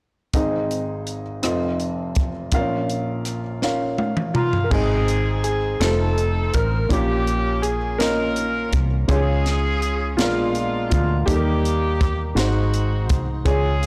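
Jubilant and soulful, this slow gospel piece in 6/8 moves at 55 BPM in Ab major, and it is cut from a longer performance. A woody, intimate upright piano with audible action noise and a crisp fusion drum kit open together at 0.3 s, the kit sounding airy and polished with dark cymbals, a high-tuned snare and a punchy kick, both up front over chords moving from Ab through F7 to Bbm. Both piano and drums play a fill just before a fingered electric bass arrives at 4.7 s, its tone direct and amped, foam-muted and thickened by tube saturation. A tight saxophone section with soft attack and jazz-style vibrato carries the melody alongside a clear grand piano that sits in the background, and the harmony later passes through Db, Bb7b9 and Eb to close on Ab7. Light reverb surrounds a blown-out, overdriven recording.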